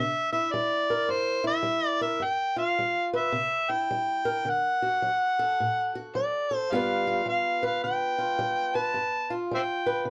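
A small, moderately ambient room frames this rollicking, soulful snippet of acoustic country blues, a swung duo at 107 BPM in G mixolydian cut from a longer piece. Up front, an amplified, overdriven harmonica carries the jazz-style melody with a gritty edge, light vibrato, tongue slaps and scooped notes. Beside it, a fingerpicked swing-style acoustic guitar on old strings gives a dark, woody, boxy accompaniment through the C7, G7 and D changes from 0.0 to 10.1 seconds.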